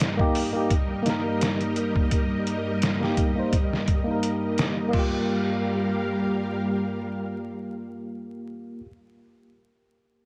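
Cinematic and hypnotic, this trip hop excerpt pairs sustained string-machine cello chords, mellow and sawtooth-edged with ensemble chorus, against a bell-like tine electric piano accompaniment that is bright and up front, shimmering with tremolo, tape echo and a low-pass filter. A muffled, compressed sampler-style drum kit with a thumpy kick, medium-tuned snare, hi-hat and crash plays a swung groove until 5.1 seconds, as the harmony moves from Eb/G to Gm7 at 4.9 seconds. Twelve-bit sampler grit coats the drums, piano and strings, while light reverb and vinyl crackle frame the sound.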